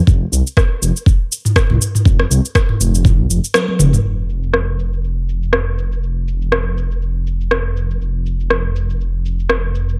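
Up-front and set in a large room with light reverb, this short, hypnotic afro house cut moves at 121 BPM with a 16th-note swing and an earthy feel. A dark, detuned sawtooth bass rumbles and beats underneath with sidechain pumping, while an electronic afro-pop kit of cabasa, rim click and toms plays through low-pass filtering and a knocking electronic kick drives the opening seconds. At 3.5 seconds the kick drops out, and that moment brings a drum fill and a band accent before the groove settles into its next section at 4.0 seconds.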